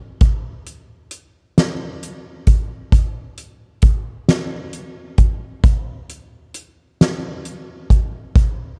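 A slow, straight 6/8 pulse, counted in broad dotted-quarter beats, carries this short, aching and dramatic pop fragment. A soft-mallet acoustic drum kit plays alone from 0.2 to 8.6 seconds, its fat snare and boomy kick sitting up front alongside the hi-hat. The dry, close 1970s-style studio sound keeps the kit intimate and heavy.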